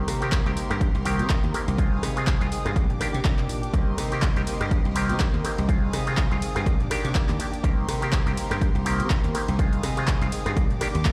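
Filtered disco house in C minor at 123 BPM with a sensual, funky 16th-note swing, this brief excerpt cycles Cm7, Fm7/C and Ebmaj7 as a dry, foam-muted slap bass and an up-front, overdriven analog kick drive beneath punchy drum-machine handclaps, hi-hat, ride and rim click, while a twangy, nasal auto-wah clav with phaser, a clean, compressed direct guitar riff and an earthy violin section holding sustained chords in the background all pump against the kick, heard as if on a big sound system in a bare room.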